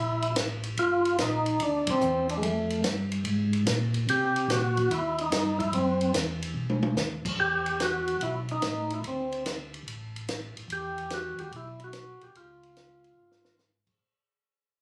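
Swinging in 4/4 at 145 BPM, this greasy, soulful soul jazz organ trio snippet sets an up-front, percussive tonewheel organ melody with key click and slow rotary speaker over a round, dark tonewheel organ bass line with vibrato, while a compact acoustic cocktail drum kit with dark cymbals, a high-tuned snare and a tight kick enters at 0.2 seconds, hits the band accent with the organs at 1.8 seconds and plays short fills at 6.6 and 13.2 seconds, all captured on a phone in a club room with moderate reverb and compression before fading out from 7.4 seconds.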